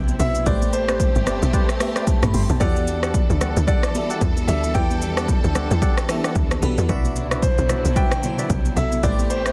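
Hypnotic and soulful, this amapiano excerpt at 112 BPM in E minor rides a swung sixteenth groove. Up-front deep house drums with a punchy kick, smooth hats, rim click, shaker, toms and vintage 12-bit grit sit over a tight, percussive log drum bass, while soft-handed, high-tuned congas ring very quietly beneath. A clear, intimate grand piano carries the melody through digital delay, and a crystalline FM electric piano with chorus, lush distant bowed strings with vibrato, and a dark, hollow organ stab entering at 0.5 seconds fill out the Am11, Em11 and Cmaj9#11 harmony in a dry, dense, heavily limited mix.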